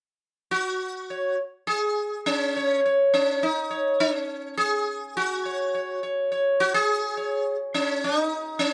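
Meditative and devotional, this short Indian classical passage in straight 4/4 features a lone acoustic sitar playing from 0.5 to 8.7 seconds, cut from a longer piece. Plucked with a plectrum, the sitar sits up front with a round, buzzing tone and shimmering sympathetic strings, moving between Db4 and Db5. A light reverb gives the instrument a gentle sense of space.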